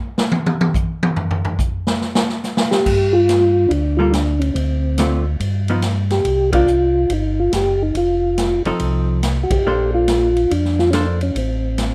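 A swinging 4/4 groove at 141 BPM opens this bluesy, late-night soul jazz organ trio excerpt in G minor, with the roomy big-band drum kit and its boomy kick taking a short solo before a flute-like, percussive tonewheel organ melody enters at 2.7 seconds, colored by slow rotary speaker and chorus vibrato. A round, dark organ bass with key click and its own slow rotary joins at 2.9 seconds, and a compressed, clean hollow-body jazz guitar adds picked accompaniment from 4.0 seconds as the chords move from G7 through Dm7, Cm, F7 and Bbmaj9, punctuated by two band accents. Light reverb gives the up-front parts a gentle sense of space.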